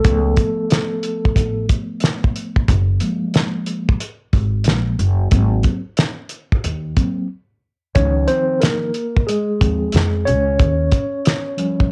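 Cool, relaxed jazz-hop at 91 BPM with a swung 16th-note feel, where a mellow, clean tine electric piano heard through its built-in speakers and colored by cassette tape plays a solo over a rootless Db7b13, then Gbmaj9, Ab9, Dbmaj9 and Eb7 chords. A woody pizzicato upright bass with steel strings and tube saturation sits up front until 10.9 seconds, and a cloth-damped, thuddy drum kit with a fat snare, tight kick, hi-hat and rolled-off top keeps time, with a break from 7.3 to 8.0 seconds. It is all captured as a dry, intimate home cassette recording cut from a longer piece.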